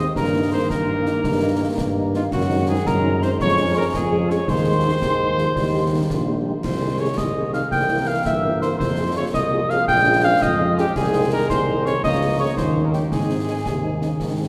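A vintage-toned cornet leads this festive, rousing 6/8 military march for wind band in Ab major at 111 BPM, while a hollow, vibrato-tinged piccolo carries a soft second line high above it. A clear, roomy tuba anchors the bass up front beneath warm trombone chords, a dark, very quiet French horn section and a snare, bass drum and clash cymbal part with dark cymbals that enters at 0.2 s. A mellow, smooth-topped euphonium adds a brief second line from 5.0 to 6.5 s, and the whole band sits in a wet church reverb, moving through Fm and Bbm7 before settling on Ab in this short fragment cut from a longer piece.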